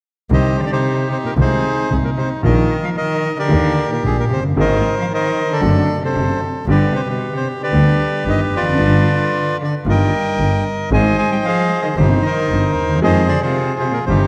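The recording sits in a wet concert hall with a 2.0-second reverb tail. This passionate, melancholic tango fragment in C minor moves at 113 BPM in 4/4 with a rubato feel, tuned to A4 = 444 Hz. All four parts play throughout, from 0.3 to 14.3 seconds. A reedy, bright bandoneon carries the melody up front. A single bowed cello traces an expressive second line beneath it, with vibrato, portamento and a soft attack. The clear concert grand piano gives natural accompaniment with deep bass. A lone bowed double bass, played sul tasto, adds a rich, pure, floating bass that sounds distant. The harmony moves from Cm through Ebmaj7 and D7/F# to a long G and G7, then settles on Cm7/G and Fm as the passage breaks off mid-piece.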